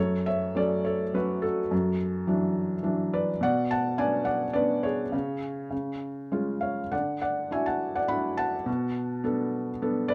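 Moody and cool, this lyrical classical excerpt for solo felt-muted upright piano moves in a rubato 3/4 at 104 BPM. Its soft, intimate tone sits up front with audible action noise, set in light reverb and a dark production as it drifts from F#m through Bmadd9 and C# to close on Bm7 at 8.7 seconds.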